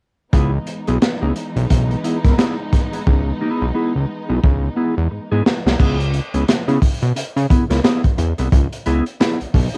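Funk at 88 BPM in C# minor, this short excerpt has a sly, driving mood, opening on a C#m7 chord with a 16th-note swing. Crunchy, gritty breakbeat drums with a punchy kick, high-tuned snare and dark cymbals sit up front beside a fat, detuned sawtooth bass with a filter sweep, while a mellow, fingered electric guitar with phaser and woody, lush bowed strings fill in beneath until the strings stop at 5.8 seconds. A drum fill runs from 3.1 to 5.8 seconds, leading into the second section, and the cassette home recording lends a dry, tape-colored character to the guitar, strings and drums, with the drums also saturated and rolled-off on top.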